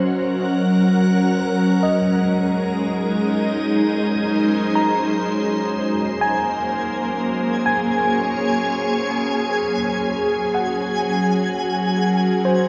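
Set in a vast, echoing cathedral-like space, this luminous, weightless ambient fragment at 62 BPM opens on a pure, full-bodied organ-like pad holding slow-attack chords from Gb through Abadd9 to Gbadd9, with a filter sweep shaping it over the first 5.7 seconds. Above it, a worn, slightly out-of-tune tine electric piano plays lightly overdriven arpeggios through a combo amp with tape echo and shimmer reverb, while a tense, string-like bowed drone with phaser and vibrato sits in the background. At 6.0 seconds a twinkling, sparkling granular texture joins with an octave-up shimmer.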